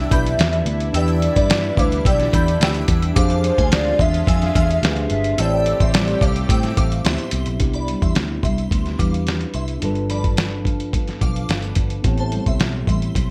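A hollow, woody synth lead with a soft attack carries the melody from the start, bathed in lush chorus and delay, while a shimmering FM bell traces a second line high above and a thick, detuned sawtooth pad holds sustained chords beneath. This is hazy, sunny indie bedroom pop at 108 BPM in 4/4 with a straight feel, cut from a longer piece in C major, with the harmony moving from Cmaj9 through Em7 and Fm6 to Am7. A mellow, clean tine electric piano and a fingerpicked nylon-string guitar, full-bodied and set in the background with analog chorus and vibrato, fill out the accompaniment throughout. Underneath, a dark, foam-muted vintage electric bass sounds round and punchy, and a compressed, pitched-down sampler-style drum kit sits up front with a thumpy kick, medium-tuned snare, hi-hat and a tape-tinged, muffled character. The lead and pad drop away around 7.3 and 7.6 seconds as the second section begins on Cmaj7, G7 and Am7, leaving bell, keys, guitar, bass and drums under a light reverb.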